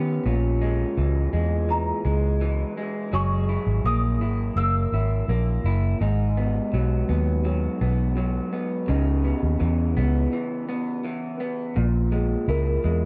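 A straight 4/4 pulse carries this wistful, hazy bedroom-pop excerpt, where a slightly broken-up, lo-fi electric guitar through a small old amp, with subtle chorus and warbly pitch drift, sits up front beside a round, punchy, foam-muted vintage bass over chords moving from A#m7b5 through F#9, G#m7 and C#m9. A delicate, bell-like celesta with soft felt hammers carries the melody from 1.7 seconds, dressed in ensemble chorus and tape echo, then returns at 12.5 seconds after a break at 10.3 seconds. The dark production is set in light reverb and studio ambience.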